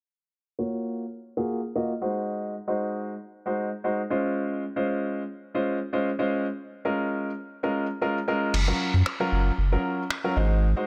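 A polished, present baby grand piano carries this euphoric, carefree dance-pop fragment at 115 BPM in a straight 4/4, its low-passed chords of Gbmaj7, Ab7, Dbmaj7 and Bbm7 moving under a filter sweep until 8.5 seconds. At that point a deep, round sine sub bass arrives up front with a fast attack and sustained notes, joined by a muffled, pitched-down, sampler-style trip hop kit of crash cymbal and finger snaps with a compressed, tape-warm character. Light reverb surrounds the parts as the passage returns to Gbmaj7 and Ab7 before this cut from a longer piece ends.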